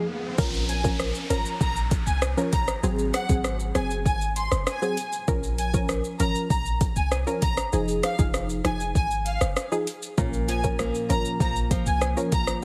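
A heavily compressed, radio-style sound with light digital ambience frames this hypnotic, tough dancehall clip, cut from a longer piece. A riser and downlifter open the track, and an electronic afro-pop kit arrives at 0.4 seconds: its deep kick, metallic hats, rim click, shaker and crash are overdriven and sit up front beside a clean, boomy sine 808 bass. Punchy, nasal chord stabs built from detuned sawtooth and pulse waves, with a filter pluck and chorus, carry the progression from Bbm through Ab7 and Fm7. Above them a lush studio violin section plays a smooth, vibrato-rich bowed melody touched with digital delay. At 10.2 seconds a fingerpicked steel-string acoustic guitar adds arpeggios, with finger squeaks audible, as the harmony returns to Bbm.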